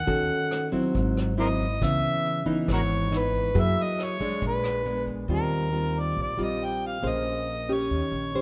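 This sophisticated, sunny bossa nova cut from a longer piece opens at once with a gritty, overdriven harmonica carrying the melody up front, played jazz style with soft attacks, light vibrato, scooped notes and tongue slaps. Beside it, a dark, classical nylon-string guitar is fingerpicked through rich extended chords, with an audible finger squeak, while a woody pizzicato upright bass anchors the low end. A vintage brush drum kit sits distant and roomy, with a punchy kick, rim clicks, hi-hat and a rolled-off top, keeping a straight 4/4 at 138 BPM until it drops out at 5.2 seconds. From 5.3 seconds the harmony settles into Eb major, leaving harmonica, guitar and bass to carry the closing passage. A moderate concert hall reverb lends the recording a spacious, glowing sheen.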